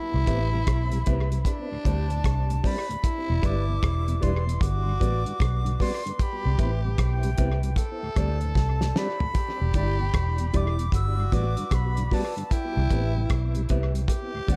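A dry, echo-heavy mix frames this hypnotic, serious roots reggae excerpt at 76 BPM with a swung sixteenth feel, where an airy, reedy flute carries the melody over a gritty tenor saxophone second line, a mellow tonewheel organ with chorus vibrato and slow rotary speaker in the background, a dark, clean fingered electric guitar, a round, foam-muted bass up front and a cloth-damped drum kit with a fat snare and tight kick that plays a fill at 8.6 seconds, all moving through a repeating Cmaj7, D7sus4, Em7 and Gmaj7 progression.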